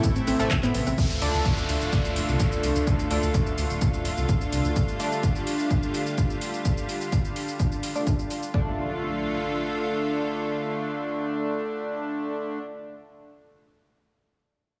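A driving, cinematic slice of melodic techno opens with a punchy electronic kick up front, a layered deep house kit of claps, rim clicks, shaker and metallic, overdriven hats, and a round, dark analog bass. Alongside them come a lush, detuned pad with slow attack, an edgy, nasal sync-sweep polysynth playing bright stabs, and brief touches of a thick, mellow unison lead and a woody wave-folded pluck arpeggio in the background, with the synths and bass pumping against the beat. A filter sweep moves across the polysynth from 1.0 s to 8.5 s as an electronic downlifter and impact mark the transitions, and once the drums drop away the pad and polysynth carry on to 12.6 s in a light digital ambience.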